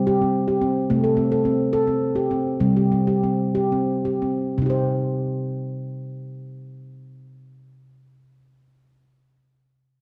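A lone handpan opens with ringing arpeggios, its nitrided steel struck by the fingertips and placed up front, spanning C3 to C5. This meditative world piece sits in C dorian with a 6/8 metre and a straight feel, moving at a gentle 54-73 BPM counted in dotted quarters. The harmony drifts from a C5 sonority to Am/C and back, while the pulse slows between 0.9 and 4.6 seconds. At 4.6 seconds a new section settles onto C minor, deepening the hypnotic mood as the handpan carries on until 8.7 seconds. A wet recital hall reverb with a touch of small room ambience surrounds the instrument, giving the dark, warm production a soft halo; the clip is cut from a longer piece.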